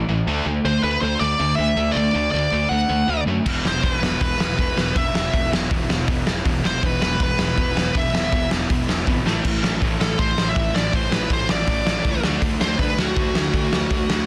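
Angry and urgent, this 160 BPM punk rock excerpt opens with two bright, picked distorted rhythm guitars and a growly fuzz bass behind a dark, up-front bluesy lead guitar with delay from 0.7 s, before a double-tracked overdriven guitar and a punchy, gritty garage drum kit with a fat snare kick in at 3.5 s, a drum fill arriving at 9.3 s over chords moving from D5 to E5, A5 and D in a dense, dry, heavily limited mix.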